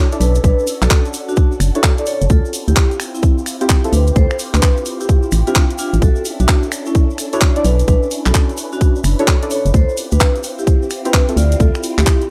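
A hollow, organ-like FM bass sits up front in this skippy, bouncy two-step UK garage cut, its dark, fast-attack notes decaying beneath a tight, layered electronic kick drum. The garage kit adds finger snaps, handclaps and warm hi-hats with a swung sixteenth-note feel, while a grainy tube shaker rustles in the background. Deep, nasal, detuned chord stabs with chorus and tape echo trade between Bm11 and Dm11 harmonies, and a silky string machine holds sustained chords through a phaser and ensemble chorus, pumping with sidechain compression. Over the top, a vibraphone played with medium mallets carries the melody, its metallic ringing tone shaded by a slow motor vibrato and a tape echo, with a vintage, band-limited character. The mix has a dry, gritty hardware sound with a digital ambience, and the passage is cut from a longer piece.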